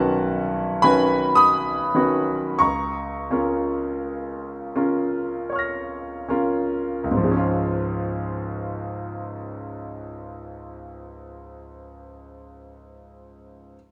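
A clear, up-front concert grand piano plays alone in this hazy, serene excerpt of impressionist classical music, moving in a flexible, rubato three-beat lilt, its open sound anchored by a deep bass and bathed in the wet reverb of a stone room as it slows over the opening 7.0 seconds before passing into a contrasting section that runs to 11.5 seconds.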